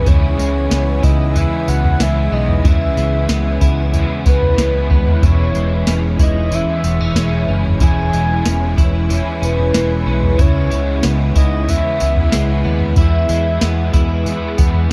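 A soft vintage rhythm box keeps a straight 4/4 pulse at 93 BPM, its deep kick, tonal snare, tambourine and toms sitting up front with a tape-warm analog tone, alongside a dark, round, foam-muted fingered electric bass that is also placed up front. This blissful, floating dream pop passage in E major is cut from a longer piece and moves through C#m7, E6, C#m7 and finally E at 13.0 seconds. A clean, compressed electric guitar plays picked arpeggios through analog chorus and tape echo, while a crunchy overdriven guitar adds picked accompaniment colored by harmonic tremolo and ensemble chorus. An ethereal, airy pad of detuned sawtooth and triangle voices holds sustained chords with a slow attack and long release, bathed in ensemble chorus and its own reverb. On top, a soft octave-layered synth lead carries the melody with a full, mellow sine and sub-octave tone, vibrato, chorus and tape echo, ending at 13.9 seconds, all within a dark production touched by light reverb and digital ambience.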